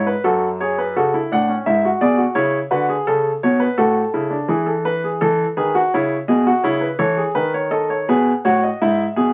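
A baby grand piano opens the recording at 0.0 seconds, heard through the crackle of a very old 78 rpm record. This is a cut from a longer piece: a baroque-style classical fugue in three parts, played on solo piano in 4/4 at a steady, straight 84 BPM, with a stately yet lively mood. The piano sounds natural and up front, with a short sustain, and covers a range from F#2 to F#5 for the full 9.3 seconds. The harmony moves through F#m, E/G#, A, E, C#m and B/D#, returning to E/G# at 8.8 seconds. A moderate small-room reverb gives the instrument a modest sense of space, while the surface noise of the old disc lends the whole passage an antique, worn character.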